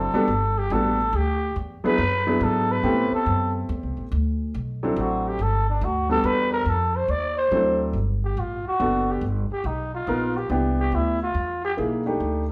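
A swung triple metre at 141 BPM, with eighth notes lilting at a 66% swing, carries this short, relaxed cut from a longer small-group jazz piece in a swing and bop vein, tuned slightly high to A4 = 445 Hz. A growling trumpet sings the melody between D4 and D5, its tone dark, breathy and raspy, with a gritty edge that sounds distant and roomy even though it sits up front. A baby grand piano supplies warm, natural accompaniment with short sustain, moving through changes such as Gmaj9, E7, Am7 and D7 before the harmony settles into G major at 7.9 s. Underneath, a pizzicato upright bass with steel strings gives a woody foundation from F#1 to A2, set slightly lower in the mix than the other two. The band plays live in one large studio with a wet reverb, and the trumpet drops out at 11.7 s while piano and bass carry the closing B7alt, the piano stopping at 12.4 s and the bass sounding on to the cut at 12.5 s.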